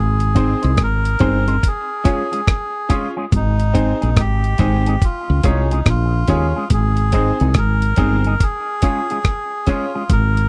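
Laid-back roots reggae at 71 BPM with a swung sixteenth feel, cut from a longer piece, where a reedy, nasal melodica carries the melody through dub echo over a growly, round fretless bass that sits up front, a gritty sampler-style kit of thumpy kick, hi-hat and rim click entering at 0.2 seconds, a dark envelope-filtered guitar with its own dub echo, and brilliant grand piano stabs, all alternating between Ab and Db in a dry, close 1970s-style studio sound with light reverb.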